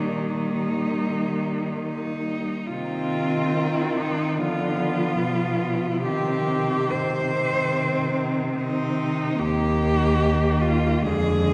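A rubato 4/4 pulse drifting between 66 and 75 BPM carries this lyrical, serene classical fragment in C minor, cut from a longer piece and scored for four bowed cellos. Close and up front, the lead cello sings the melody with a soft attack, vibrato and expressive portamento, while a rich, smooth second cello moves beneath it, a dark, woody cello supplies the accompaniment, and a warm bass cello with the same gliding vibrato anchors the low end. A wet cathedral reverb with a 5.0 s decay surrounds the ensemble in a church or concert hall as the harmony turns from Eb to C minor and a new section opens at 2.7 s.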